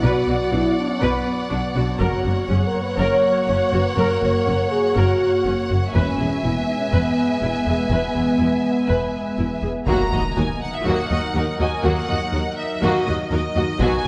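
This cinematic hybrid of orchestral and electronic film scoring moves at 122 BPM in 4/4 with a vast, brooding mood, centred on Eb phrygian and passing through Bm, Gb, E and Ebm. A bowed studio violin section carries the melody high and focused, with a smooth top and vibrato, while a lush symphonic violin section traces a soft-attacked second line and close-miked violas fill the accompaniment. Mellow French horns hold sustained chords until 9.6 seconds alongside a warbling, nostalgic tape-like pad of detuned sawtooth and triangle tones treated with chorus, phaser and its own reverb. Beneath them, an expressive double bass section and background cellos anchor the low end with bowed, vibrato-laden tone. A very quiet taiko ensemble struck with heavy sticks marks brief hits in a live room, and at 9.9 seconds a huge, bright impact lands as the harmony turns to Ebm, all washed in a concert hall reverb in this cut from a longer piece.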